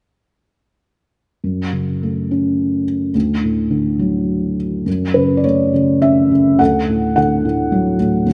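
Classical solo piano in F# minor, brooding and bittersweet, moving at 106 BPM in 3/4 with an uneven, rubato pulse in this short passage cut from a longer piece. A felt-muted upright piano plays alone from 1.4 to 8.3 seconds, its thick-felt tone dark and intimate, sitting up front with audible action noise and ranging from D2 up to F#5. The harmony sways between F#m and D, shifting into a second section at 4.9 seconds, all set in a moderate scoring-stage reverb with the top end rolling off above 10.8 kHz.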